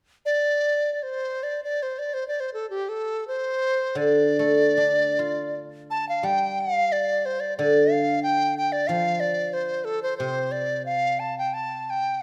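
In free time and D yu mode, this tender, wistful piece of Chinese traditional chamber music opens with a large dizi carrying the melody alone from 0.3 seconds, its pure bamboo tone, buzzing membrane, crisp attack and expressive vibrato sitting up front, until a ringing, silvery guzheng played with fingerpicks joins in accompaniment at 4.0 seconds, both held in a moderate concert hall reverb as this fragment cut from a longer piece moves into a new section at 6.3 seconds.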